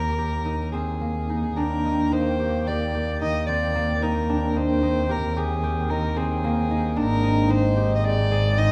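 Lightly reverberant, this pensive, hypnotic fragment of contemporary chamber music moves at 111 BPM in 5/4, with a dark, woody bowed fiddle carrying the melody over mellow, ringing fingerpicked concert harp arpeggios and an expressive bowed double bass with vibrato and portamento, while a reedy, nasal hand-pumped harmonium joins with sustained chords at 1.6 seconds as the harmony shifts from Eb to Ab at 7.0 seconds.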